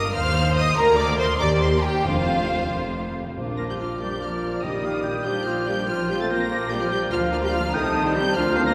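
Heard in a wet, cathedral-like acoustic with a long reverb tail, this short cut from a quick classical-period symphony movement feels graceful and cheerful in its lilting 6/8. Bowed strings carry the opening: a focused, vibrato-rich violin section sings the high melody over a second violin line, with an even viola accompaniment, an expressive cello section set in the background and a lush, close double bass section beneath. Timpani struck with hard, articulate mallets on calf heads join in the background shortly after the start and drop out partway through. At 3.4 seconds the winds begin to arrive as the music moves into a new section: an airy, mellow flute group adds a second line and a dark, roomy bassoon adds accompaniment. At 3.6 seconds a clarinet with a smooth top adds another second line, and a very quiet, distant horn section holds sustained chords. A clear solo oboe enters at 4.0 seconds with a second line of its own, and the passage closes on an Adim/C chord.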